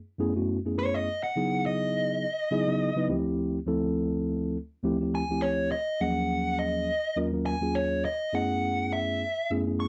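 Jazz with a funky, nocturnal mood and a light swing, where a mellow, clean tine electric piano comps through minor eleventh chords from the start while a dark, smooth, overdriven lead guitar with slapback echo takes a picked solo up front from 0.8 seconds, all captured in a dry, close 1970s-style studio sound.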